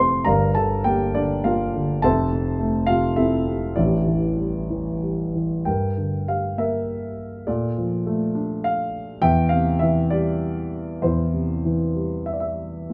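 Classical solo piano in a lyrical, moody vein, this brief passage moves in a rubato triple metre with a brooding air. A single dark concert grand carries everything from 0.0 to 12.9 seconds, ranging from a deep bass low in the keyboard up into its upper register. Its tone is mellow and smooth with a vintage character and a short sustain, and the instrument sits up front in the sound. Harmonies drift through Gm7, Fmaj7 and A7sus4 before a new section arrives at 5.7 seconds, turning to Gm, Bbmaj7 and C/E. Moderate studio reverb lends a modest sense of space, and the passage is cut from a longer piece.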